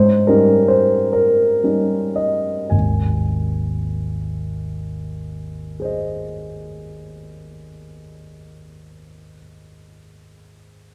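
Classical romantic character piece for solo piano in Ab major, this hopeful, lyrical excerpt unfolds in a rubato 6/8 at a slow 36-49 BPM, its dark, mellow grand piano sitting up front across a span from Ab1 to Ab5 in a wet recital hall reverb, slowing through an Eb7/Ab harmony before settling onto Ab at 2.7 seconds.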